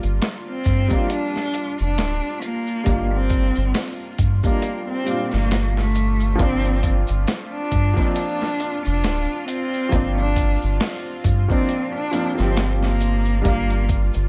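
Trip hop at 68 BPM in G minor with a melancholic, hypnotic swing, this excerpt cut from a longer piece pairs a gritty, overdriven sampler-style drum kit and its thumpy kick with a deep, round analog bass, while a woody upright piano with tremolo, 12-bit sampler grit and tape echo moves from Gm7 to Bbadd9. Quiet maracas and triangle sit in the small room, and a tense, detuned string-like drone with phaser hovers in the background. An expressive bowed cello with vibrato, portamento and tape echo carries the melody from 0.5 s to 13.9 s.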